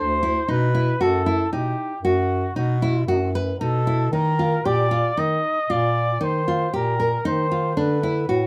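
In a straight 7/4 at 115 BPM, this shimmering, hopeful passage of contemporary chamber music, cut from a longer piece, sets a punchy, roomy flugelhorn melody with vibrato, reaching Eb5 at 4.1 seconds, over full-bodied fingerpicked nylon-string guitar arpeggios and a warm, classical-style bass clarinet line, all three up front with close, detailed microphones and light reverb.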